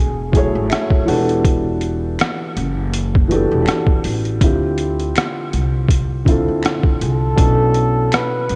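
Lo-fi hip hop at 81 BPM with a nostalgic, hazy mood, cut from a longer piece: a mellow felt-muted upright piano with cassette-tape color sits up front over woody pizzicato upright bass on gut strings, a compressed, pitched-down, muffled trip hop sampler-style kit with thumpy kick, hi-hat and rim click comes in at 0.3 seconds, a very quiet band-limited finger snap joins at 0.7 seconds, and a breathy flugelhorn with light vibrato and analog delay plays the jazz-style melody at the very start and returns at 7.0 seconds, while the chords move from F#m11 through Em11 and Dm11 to Bm11 in light studio reverb.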